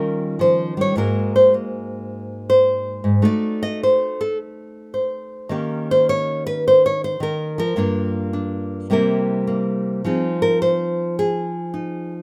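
A relaxed swing pulse in four drives this short cut from a longer solo jazz performance, its eighth notes carrying a lilting, uneven feel. A lone nylon-string guitar carries everything for the full 12.2 seconds, fingerpicked in a classical manner and placed up front in the sound. Its acoustic tone is warm, ranging from the low G2 up to Eb5. The harmony moves from Eb9 to Ab9, through a diminished chord and back to Eb7, then turns toward Gm7, C7 and Fm7 near the close. Close, detailed microphones and a dry room keep every string attack intimate and clear, giving the passage a swinging, warm mood.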